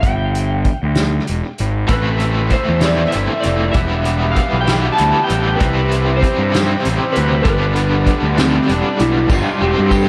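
A slow, rolling 6/8 pulse at 65 beats per minute, counted in dotted quarters, sets a mysterious, trippy psychedelic rock mood in this short cut from a longer piece. From the opening, a slide guitar played with fingerpicks carries the melody through tape echo, its tone slightly broken-up, while a punchy, fuzz-soaked picked bass sits up front in the low register and a soft-mallet drum kit sounds distant and roomy, with dark cymbals, a medium-tuned snare and a thumping kick. At 1.9 seconds a bright, double-tracked, overdriven electric guitar riff arrives with tremolo and tape echo, compressed and placed forward, as a buzzy vintage combo organ holds very quiet sustained chords with light vibrato. The harmony moves from G through A minor, E minor, C and G before settling on a Gsus4. A jingly tambourine, echoed and tucked into the background, joins only at 9.3 seconds. The small-room ambience and echo-heavy mix give the whole passage a hazy, enveloping depth.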